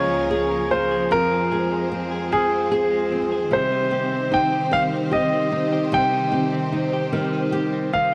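A dark, warm production with light small-room reverb frames this melancholic, dramatic excerpt of a six-eight pop ballad at 50 BPM, where a clear, up-front concert grand piano carries the melody with audible action noise and long sustain, a fingerpicked flamenco guitar accompanies with finger squeak, a lush bowed string section holds smooth sustained chords with vibrato, and a compressed clean electric guitar recorded direct picks arpeggios through digital delay in the background, moving from Bbm7/Db to Fm at 1.1 seconds and Cm at 3.5 seconds.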